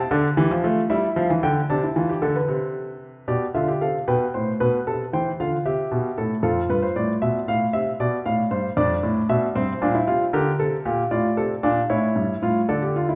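In a straight 12/8 at 76 BPM, this contemplative yet driving baroque-style three-part fugue for solo grand piano, cut from a longer piece, sets a warm, up-front piano with short sustain against the lingering reverb of a recital hall, its muted top end softening a harmonic path that moves from D minor through G7/B and Fmaj7 to close on A7 at 11.9 seconds.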